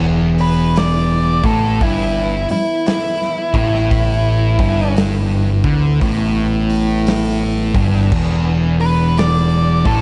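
A slow 57 BPM stoner and doom metal groove in 4/4 with a swung eighth-note feel drags through this sludgy, ominous excerpt, which sits on an E minor chord and is cut from a longer piece. Two thick, dark fuzz guitars grind out a low riff in the background over a growling, overdriven picked bass, while a clear tonewheel organ holds sustained chords through a slow rotary speaker. From 0.4 seconds a big acoustic rock kit with a punchy kick and medium-tuned snare enters together with an up-front octave-fuzz lead guitar soloing with slapback echo, all wrapped in a small, dark room reverb.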